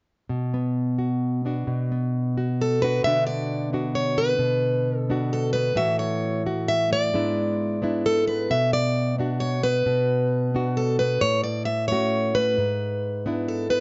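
A nylon-string guitar opens at 0.3 s with fingerpicked, classical-style accompaniment in B dorian, setting a wistful, melancholic mood at 132 BPM in 3/4 over a cycle of Bm, A6 and E7/G#. At 2.6 s a picked, plugged-in steel-string acoustic guitar enters up front with the melody, its concert tone carrying audible finger squeak. Moderate studio ambience surrounds the two guitars, the top end is soft and rolled off, and this cut from a longer folk piece runs to 13.8 s.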